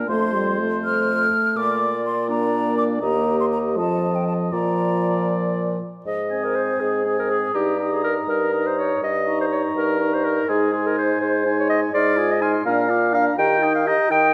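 Heard through a moderate stage reverb, this spirited, graceful classical-period movement for wind quintet in straight 6/8 has a mellow, hollow silver concert flute carrying the tongued, vibrato-touched melody from 0.1 s, a warm oboe with a soft attack on the second line, a clear clarinet and a vintage-toned French horn in the accompaniment, and a dark, roomy bassoon up front on the bass, with the harmony moving to a new key at 6.1 s in this cut from a longer piece.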